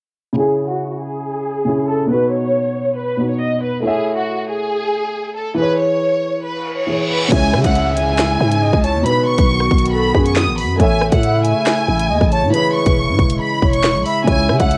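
A half-time drill groove in 4/4 lands at 7.3 seconds, bringing a hard-clipped kick, sharp snare, hi-hats, handclaps and rim clicks, along with a growling, buzzy 808-style bass and a breathy, flute-like synth lead coloured by chorus, tremolo and delay. Before that, this cold, ominous hip hop excerpt opens on a dark, boxy baby grand piano with audible action noise and a lush violin section carrying the melody with vibrato, both low-pass filtered and tape-tinged, while a reverse cymbal and downlifter enter in the background at 6.6 seconds. A deep, detuned analog pad settles underneath from 7.8 seconds, and the home cassette recording carries light reverb.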